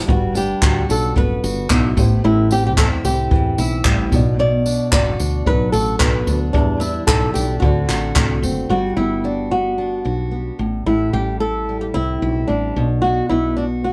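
Acoustic pop in G major at 111 BPM with a light sixteenth-note swing, easy-going and carefree, played by a band live in one room with light reverb. An up-front flamenco guitar carries the melody with audible finger squeak over a fingerpicked steel-string acoustic guitar, a growly, round fretless electric bass, a jazz brush kit with a boomy kick, handclaps and tambourine, and a very quiet felt-muted upright piano whose thick felt and action noise lend an intimate, mellow shade. The piano and drums drop out by 8.7 seconds, leaving the guitars and bass to move from Gmaj7 and Am7 toward a closing B5 in this excerpt from a longer piece.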